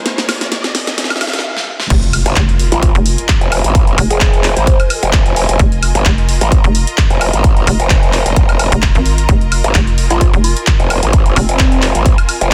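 A dense, heavily limited modern mix with a dry, close sound opens this gritty, bouncy bass house clip, cut from a longer track. Clear, smooth symphonic strings with light vibrato sit in the background under sidechain pumping, while a background riser climbs and big-room drums build with fills before a brief stop at 1.4 seconds. The drop lands at 1.9 seconds with an impact and a punchy, layered electronic kick up front, joining the kit's huge snare, handclaps, hi-hat, crash and woodblock. Two pumping basses carry the low end: a hollow, knocking FM bass with a fast, decaying attack, and an aggressive, saturated growl bass that wobbles through a formant filter, bright and chorused with overdrive. A catchy, plucky lead built from detuned square-wave unison with a noise layer, a filter sweep and a moving notch sits dark in the background with tape echo, appearing briefly after the drop and returning at 10.1 seconds.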